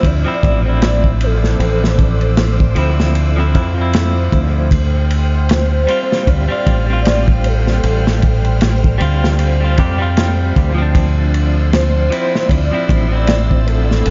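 Trip hop at 77 BPM in D minor with a swung 16th-note feel, this brooding, cinematic passage cut from a longer piece moves from Dm9 to Csus4 and back as a gritty breakbeat kit of tight kick, medium-tuned snare and dark ride cymbal sits up front with 12-bit sampler saturation and analog delay beside a round, punchy fingered dub bass, while a clean, compressed electric guitar is colored by tremolo and tape echo, a breathy, gliding sine lead with vibrato and dub echo carries the melody, a vintage sawtooth string-machine cello pad with phaser and chorus hangs in the background, and a very quiet, tense bowed-like drone enters at 1.2 seconds, the whole set in a small, echo-heavy room with a dark-topped mix.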